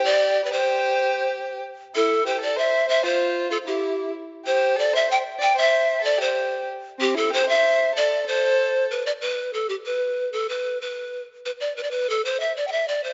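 Andean folk for an Andean ensemble, this short passage taken from a longer piece moves in an unhurried 2/4 with a straight feel and carries an earthy, wistful mood. A breathy, polished pan flute sits up front with the melody, its woody tone softened by a gentle attack, a touch of chiff and vibrato, with lifted highs and a slightly unsteady line. Beneath it, a single bowed violin supplies a second line, smooth and even, its rich tone colored by vibrato. The violin drops out at 8.9 seconds, leaving the pan flute alone as the music moves into a new section at 9.5 seconds and continues to 13.1 seconds. A moderate concert hall reverb surrounds the pair, and the top end is rolled off, giving the sound a mellow, rounded quality.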